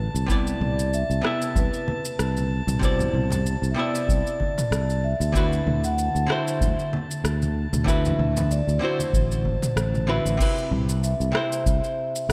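A growly, up-front fretless electric bass anchors this sunny, smooth sunset chillout excerpt at 95 BPM in C lydian, joined by a dark, hollow-body archtop guitar with vintage sampler grit and diffuse delay, a mellow vibraphone played with soft mallets entering at 0.6 s, a deep analog kick, an overdriven deep house kit with crash, rim click, shaker and toms, soft background congas, and a glassy drifting harmonics texture that drops out at 10.4 s as the chords move from Cmaj9 through D13 to Cmaj7, all in a dreamy, reverb-soaked mix.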